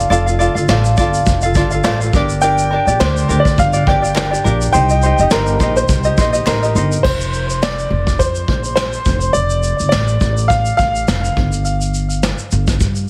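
A bright, fingerpicked tenor ukulele, a growly, woody pizzicato upright bass and a soft brush drum kit with dark cymbals and a punchy kick open this tender, wistful acoustic pop excerpt at 104 BPM with a light 16th-note swing, joined by a very quiet, crisp group handclap at 0.7 s. A clear, open upright piano carries the melody with delay from 2.4 s, and the ukulele drops out at 7.1 s as the chords move from Dm/F through Gm and Cm to Fsus4. Light reverb and a heavily compressed, radio-like sound frame the whole mix.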